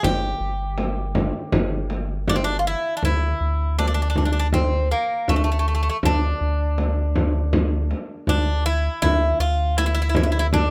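This Turkish makam ensemble piece moves at a steady 80 BPM in a straight 4/4, with a melancholic, hypnotic mood. It opens in G makam hicaz and turns to D makam nihavent at 3.0 s, tuned to A4 = 441 Hz. The bright, metallic Greek bouzouki carries the picked melody between A3 and G4 on its double strings, some of them octave-doubled, and it sits up front. Beneath it a round analog bass, built from triangle and sine tones, holds the low end from G1 to D2 with a fast attack, sustained notes and a filter sweep that give it a dark character. A large acoustic frame drum keeps the pulse with a deep sound that carries the echo of a big room. All three parts play together from 0.0 to 10.7 s under a light reverb, in a short section cut from a longer performance.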